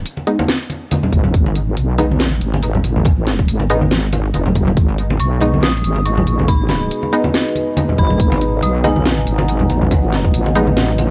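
A heavy, saturated wobble bass opens this dark, meditative deep dubstep excerpt in a swung half-time feel, and is soon joined by a garage kit's cracking snare and bright hats, soft-handed congas and a muted chord stab with dub echo in the background; a tight electronic kick lands at 1.1 seconds, an eerie, inharmonic synth bell with tremolo and 12-bit sampler grit arrives at 5.2 seconds, and a resonant drone of moving overtones settles in at 5.9 seconds, all in a dry, hardware-recorded sound with vinyl crackle.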